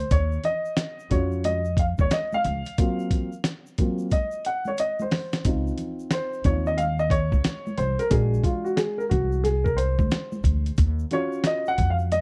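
A dark, mellow concert grand piano takes the lead in this cool jazz-hop excerpt, carrying solo passages over Ebm9, Gbmaj7#11, Dbmaj9 and Bb7b13 chords, with a woody pizzicato upright bass, a gritty sampler-style drum kit with a thumpy kick and fat snare that plays a fill at 4.1 seconds, and soft-handed egg shaker and congas tucked in the background of a dry, close 1970s-style room.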